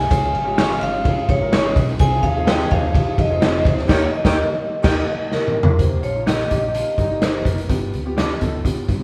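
Light reverb and vinyl crackle frame this live-in-one-room cut of joyful, danceable, uptempo 1960s-style soul at 126 BPM in Eb mixolydian, where a bright, dry, close-miked vibraphone with hard mallets carries the melody over an up-front garage drum kit with a punchy kick, a round, foam-muted fingered bass, a natural-sounding baby grand piano, slightly broken-up guitar stabs from 0.6 s, a tight horn section on the second line, very quiet finger snaps and a very quiet tonewheel organ with key click and slow rotary that holds chords until 5.8 s, as a band accent from 3.9 s is joined by a piano fill and then a drum fill just before the new section at 5.8 s.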